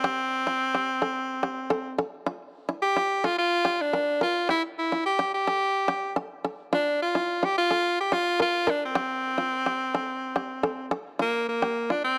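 A dry, close 1970s-style studio sound with light reverb frames this driving, funky afrobeat excerpt at 108 BPM, where an edgy, punchy tenor saxophone with light vibrato carries the up-front pop-style solo melody while a bright, twangy bluegrass banjo played with fingerpicks adds percussive arpeggios over chords moving from Am7 through Gm9 and a rootless Emadd11 before ending unaccompanied by chords at 11.2 seconds.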